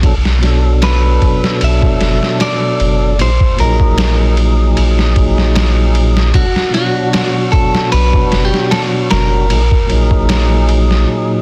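A slow, lightly swung trip hop groove at 76 BPM in 4/4 opens this dark, brooding excerpt, with a muffled, pitched-down sampler-style kit of thumpy kick, medium-tuned snare and ride sitting up front, while a deep, round dub sub bass with tube saturation holds the low end until a brief break at 11.1 seconds. A fat tonewheel organ with key click, slow rotary speaker, harmonic tremolo and tape echo supplies the accompaniment over a Bm7 to F#6/A# progression, and a clean, picked electric guitar with tape echo carries the melody from 0.8 to 10.6 seconds. Digital ambience and a dense, heavily limited modern master give the whole a dense, compressed sound.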